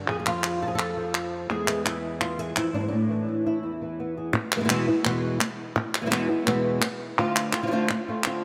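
A fingerpicked acoustic flamenco guitar leads this passionate, intense flamenco fragment, carrying the melody up front from the very start and ranging from E2 to A4. Its tone is warm, shaded by an analog chorus and a diffuse ambient delay that give the lines a shimmering halo. Crisp, close acoustic palmas hand claps join at 0.1 s and sit up front alongside the guitar, driving a straight 4/4 pulse at 169 BPM in E phrygian dominant. The harmony moves from a chordless opening onto E, A5 and back to E, and a second section begins at 4.3 s before a turn to Dm7 at 7.2 s. A long wet plate reverb soaks the whole mix, lending a dreamy, spacious cast to this short excerpt cut from a longer piece.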